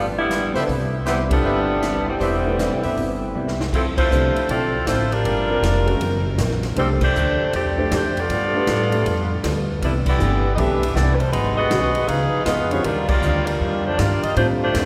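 A swung 4/4 pulse drives this joyful big band swing piece, with a swinging drum kit (boomy kick, medium-tuned snare) entering at 0.3 seconds over a woody pizzicato upright bass. A tight, up-front saxophone section with light vibrato carries the melody, while a clean, picked hollow-body jazz guitar and an intimate grand piano with audible action noise sit in the background, and a clear, close-miked trumpet section adds stabs until 3.3 seconds. Band accents punctuate the passage, and a drum fill at 3.3 seconds leads into the second section, with the recording set in the long, wet reverb of a church or concert hall.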